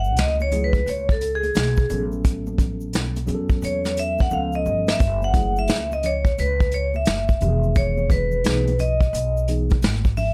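Cool and smoky, this jazz-hop excerpt sits at an unhurried 87 BPM in 4/4 with a swung sixteenth-note feel, set in F# dorian and moving through lush chords from F#m9 to A69, C#7b13 and Emaj7. A vibraphone struck with medium hard mallets carries the melody as a solo across the whole passage, its metallic, ringing tone shimmering with a fast motor vibrato up front in the mix. Beneath it, a pizzicato upright bass with steel strings gives a woody, growly, thumpy low end, while a vintage brush drum kit enters at 0.2 seconds with a punchy kick, medium-tuned snare and hi-hat, its sound rolled off at the top and placed up front in a small room. The drums play a short fill from 4.3 to 5.0 seconds, and a mellow tine electric piano, clean and heard through its built-in speakers, comps from 0.5 seconds. Egg shaker and congas played with soft hands ring quietly in the background, and light reverb surrounds the arrangement.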